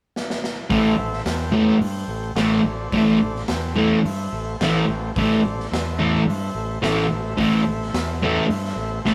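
A raw garage drum kit kicks things off with a fill at 0.2 seconds, its punchy kick, medium-tuned snare and hi-hat ringing in a bright stone room that pumps and saturates the sound. At 0.7 seconds the rest of the band crashes in on an A minor chord, led by an up-front, double-tracked fuzz guitar riff that sits dark and distorted in the low register. Beneath it, a growling fingered electric bass adds an overdriven, direct-and-amped bite, while a vintage combo organ holds buzzy sustained chords up high with a light vibrato. This swaggering, gritty garage rock cut moves at a straight, steady stride in 4/4, captured as a rough rehearsal-room recording with light reverb. It is a short slice from a longer piece, running to 9.1 seconds.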